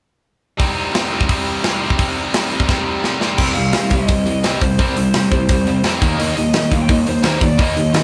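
A tight, up-front metal drum kit drives this urgent, raw punk rock clip at 172 BPM in a straight 4/4, its medium-tuned snare and tight kick framed by a rolled-off top, while two bright picked guitars, one overdriven in the background and one distorted, hammer out a riff in C minor from 0.6 seconds. After a drum fill, a dark lead guitar through a small cranked amp takes up a melody at 3.4 seconds alongside a growly fuzz bass sitting back in the mix, and the harmony moves from Cm to Eb at 6.0 seconds. The band sounds like it is playing live in one room with light reverb, and the piece is cut from a longer track.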